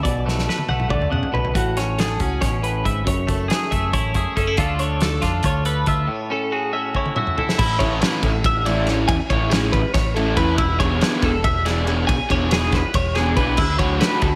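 A small, lightly reverberant room gives this playful, wistful math rock and midwest emo cut an intimate, close feel. It runs at 280 BPM in 7/8 in A major, where a warm, clean twelve-string electric guitar spins chorused, echoing arpeggios over a twangy, spring-reverbed guitar accompaniment, a round picked bass and a loose indie drum kit with a fat snare, punchy kick and dark cymbals that opens with a fill. The twangy guitar drops out at 9.1 seconds, while from 7.8 seconds a raw, overdriven, double-tracked garage guitar riff sits up front as the chords move through Amaj9, E6 and D69.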